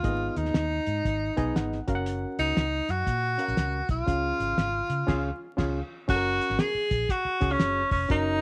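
Uptempo 1960s-style soul in F# major at 119 BPM with a swung 4/4 feel, this uplifting, joyful excerpt sets a clear, roomy tenor saxophone melody with light vibrato up front over a barky, lightly overdriven reed electric piano that adds a fill from 1.1 to 2.1 seconds, a round, foam-muted fingered electric bass and a dry, cloth-damped drum kit with a fat snare, dark cymbals and a tight kick, the music moving through G#m, F# and C# before the band hits an accent from 5.1 seconds leading into a new section at 6.1 seconds, all under small-room ambience and vinyl crackle.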